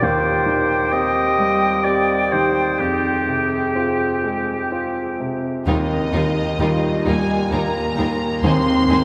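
This cinematic film score is cut from a longer piece. It opens with a vintage, long-sustaining grand piano up front, while an airy, close-miked concert flute, a classical oboe and a smooth clarinet in the background weave second lines through a slow, rubato 3/4 at 64 BPM. At 5.7 seconds the woodwinds have fallen away and lush bowed strings arrive: a distant violin section with vibrato sings the melody over a quieter violin line, very soft violas, cellos and double basses, and a mellow French horn section holding sustained chords, all in a cathedral-like reverb that deepens the longing, sorrowful mood.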